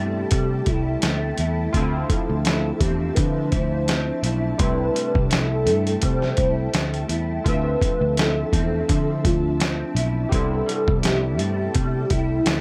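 A relaxed 84 BPM groove in 4/4 with a light 16th-note swing opens this short cut from a longer indie pop and bedroom pop piece in D dorian, tuned slightly below standard pitch, its mood wistful and lonely. A dusty, sampler-style drum kit enters at 0.3 s, with a thumpy kick, medium-tuned snare and hi-hat, sounding gritty and overdriven as if re-recorded in a small room, and it sits up front beside a dark, round, foam-muted picked electric bass. Above them, a hollow, woody clarinet-like synth lead carries the melody, soft and full-bodied with vibrato, coloured by phaser and ensemble chorus. An electric guitar through a small old amp adds twangy, slightly broken-up picked accompaniment with chorus and vibrato, while analog keys with a filter sweep and an ethereal pad with a slow attack and long release linger in the background. The harmony moves between Am7, Dm9 and Am7/C under a light reverb that gives the whole a hushed, intimate feel.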